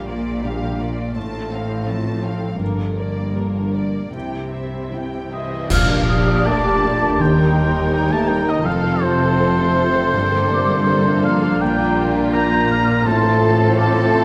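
From the opening, muted violins carry a veiled, con sordino melody alongside a second violin line, with muted violas, cellos and double basses, a felt-muted upright piano with audible action noise, and a very quiet ringing harp in arpeggios, all in a rubato Bb major film-score setting at 82 BPM. A cymbal swell with clash cymbals and concert bass drum arrives at 2.6 s. At 5.3 s a solo oboe and a mellow French horn section join, and an airy flute ensemble enters at 5.7 s with a full-band accent, lifting this moving, uplifting passage in a moderate scoring-stage reverb.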